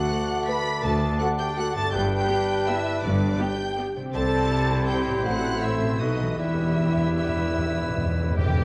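In a rubato 3/4 at 144-176 BPM, this dark, sweeping classical passage in E minor sets a lush, bowed violin section on the melody above a second violin line, mellow flutes, a solo oboe and a roomy background clarinet, while a clear bassoon and smooth background violas accompany, a dark horn section holds sustained chords, a very quiet harp rings out arpeggios, focused cellos and distant double basses carry the bass, and timpani with calf heads enter at 6.4 s as the harmony moves from D through G, C, Am and B7 to Em, the mix sitting in recital hall reverb with the warbling pitch drift of worn cassette tape.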